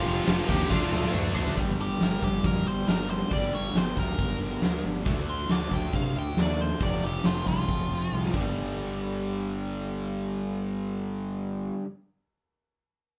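Recorded as a band playing live in one room with moderate studio reverb and a dulled top end, this menacing, aggressive hard rock excerpt in G minor at 137 BPM opens with a brief biting lead line and a heavy high-gain guitar riff in the background, while a nasal, parked-wah lead guitar takes a solo from 1.6 s over a bright, double-tracked overdriven rhythm riff, fuzzy fingered bass, and a huge, natural arena drum kit with a fat snare and punchy kick whose fills land at 0.7 s and 8.1 s.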